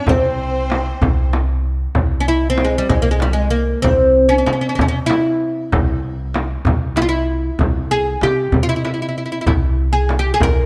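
A woody, up-front oud carries the melody through this stately Persian modal ensemble excerpt in C dastgah homayun at 64 BPM in 6/8, opened by a dark, expressive kamancheh and a lush symphonic violin section that both fall away at 1.3 seconds, while a growly pizzicato upright bass, a deep, saturated tombak sitting in the background and a small, bright frame drum played with soft hands carry on beneath it, all captured with close, detailed microphones and light reverb.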